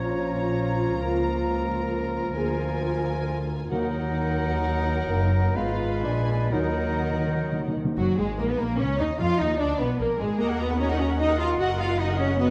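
A dark, lush violin section carries the melody with expressive vibrato and a soft attack, while a second violin line sits in the background in this stormy, urgent fast romantic movement for symphony orchestra in Eb minor. It moves in 3/4 between 121 and 152 BPM with a rubato feel, cut from a longer piece. Beneath it, a smooth viola section fills in the accompaniment, rich-toned cellos and an up-front, close double bass section anchor the bass, and a mellow French horn section holds sustained chords. A bright, vintage-toned clarinet, a clear oboe and a pure, hollow silver flute add second lines alongside a bassoon accompaniment; the winds drop out at 7.7 s. Very quiet, round timpani under soft mallets mark the opening moments and play a fill from 6.5 s. From 8.0 s the strings continue alone, all set in a moderate concert hall reverb with a shadowy production.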